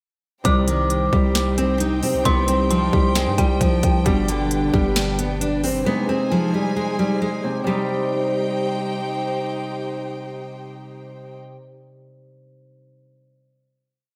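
A half-time trap beat drives this brooding, hard-hitting hip hop piece: a hard-clipped kick, a sharp snare layered with finger snaps and crisp hi-hats sit up front, while a growling, buzzy 808-style bass holds long sub notes with pitch slides that follow the kick. Over a dark chamber string section's soft sul tasto pad and a Celtic harp's ringing, open-voiced chords, a bright, fingerpicked nylon-string guitar loops the melody with delay, shadowed until 4.0 s by an eerie, inharmonic synth bell counter-melody with chorus. The drums and bass drop out by 5.9 s, leaving guitar, harp and strings to settle onto a final chord from 7.7 s in a dreamy, reverb-soaked mix.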